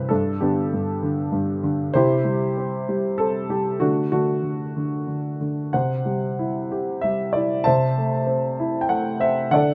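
A woody, slightly detuned upright piano plays alone and up front from 0.0 to 9.7 s, its smooth, vintage tone spanning low bass to upper treble notes in this short excerpt from a longer classical piece. The mood is relaxed and hopeful, moving in a lyrical 3/4 at 96 BPM with a free, rubato feel in C Lydian, and its harmony passes through G, C, D, C and Am/C. Close, detailed miking captures the instrument with a light touch of reverb.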